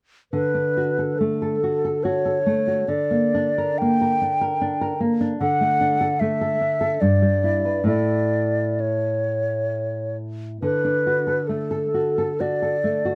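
A lyrical romantic duo in a rubato three-four, where a mellow, hollow silver concert flute sings the up-front melody with airy vibrato and tongued notes over a dark, thumb-plucked nylon-string classical guitar accompaniment, both playing together from 0.3 s through a chord progression that briefly darkens to G minor over D before settling home, all captured by close, detailed microphones with light reverb in this excerpt from a longer piece.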